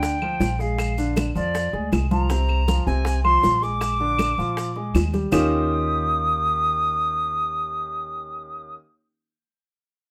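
A pure, expressive silver concert flute carries the melody up front, its crisp attack and vibrato bringing a sunny, lively spirit to this short Afro-Cuban jazz excerpt in Eb major at 159 BPM. Beneath it, a grand piano with a natural tone plays the accompaniment through a progression from Gm7 and Bb9 to C7sus4 and Bb7, while a dark, pizzicato upright bass sits up front with a woody pluck. Tight, high-tuned bongos played with soft hands and damped, thick-skinned congas in the background drive the straight 4/4 feel. Distant claves enter at 0.2 seconds and mellow, grainy maracas add texture, both set in a large room. The percussion stops at 5.4 seconds, leaving the flute, piano and bass to move onto an Eb9 chord under light reverb.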